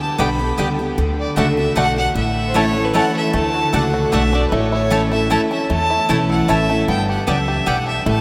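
A full-bodied, up-front picked steel-string acoustic guitar drives this rustic, joyful bluegrass excerpt in 3/4 at 152 BPM in A mixolydian, joined by an earthy, biting fiddle carrying the melody and a thumpy upright bass with gut strings. Fingerpicked banjo with slapback echo twangs along on the melody while a double-strung mandolin adds woody stabs, and a very quiet, intense second fiddle slips in briefly from 2.5 to 3.3 seconds. The whole band sits in a vast, echoing space drenched in huge ambient reverb, moving through G, D and A chords.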